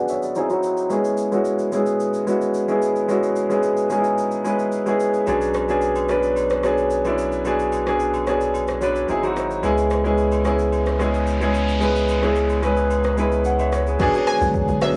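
Recorded at home on cassette with a faint mains hum and a wet, close booth ambience, this hypnotic, soulful amapiano excerpt opens on an intimate grand piano, up front with audible action noise, filtered through a sweep and a plate reverb over a punchy, dark-hatted deep house drum kit of kick, hi-hat, rim click, shaker and crash. At 5.3 s a round sine sub bass and very quiet, vintage agogo bells and woodblock join, while a background noise sweep enters at 10.6 s over the minor-seventh and altered dominant chords. In the final moments a moody, detuned sawtooth pad with sidechain pumping, a bright analog pluck melody with chorus and delay, and a tight FM log drum bass arrive together.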